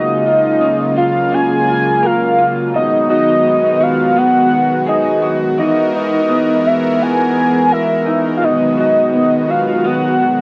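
A hazy home cassette recording with a moderate studio reverb opens this nostalgic indie pop fragment, which moves at 84 BPM in a straight 4/4 over F#maj9, B6 and Emaj9#11 chords. Up front, a round, dark synth lead layered with a sub octave carries the melody through phaser, analog chorus and tape echo. Beneath it, a slightly broken-up, compressed electric guitar through a small old amp plays picked accompaniment with lush chorus and vibrato, while a smooth, detuned analog pad with a slow attack holds sustained chords throughout.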